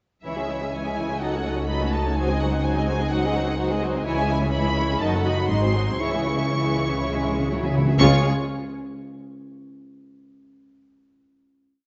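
A wet scoring-stage reverb with a dulled top end surrounds this stormy, dramatic classical piece, a fast romantic movement for symphony orchestra in C# minor at 124 BPM that closes on a major chord at 8.0 s. A warm, smooth violin section carries the lush vibrato melody over a dark, distant second violin line and an expressive background viola section with portamento, both rocking on a two-note figure. Mellow, roomy French horns hold sustained chords, a shadowy cello section and rich double basses sustain the bass beneath, and close, dry timpani struck with hard mallets enter at 6.0 s with an articulate roll.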